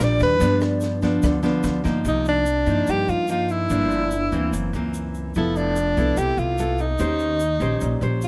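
A straight 4/4 bossa nova groove carries this smooth, wistful excerpt from a longer piece, where a breathy, clear alto saxophone with vibrato and a soft attack takes an up-front jazz solo over dark, fingerpicked nylon-string guitar and woody, thumpy pizzicato upright bass, while a compact cocktail drum kit with a high-tuned snare, tight kick and rim click plays only until 1.9 seconds and a grainy, bright egg shaker sits close from 0.2 seconds, the whole bathed in light reverb.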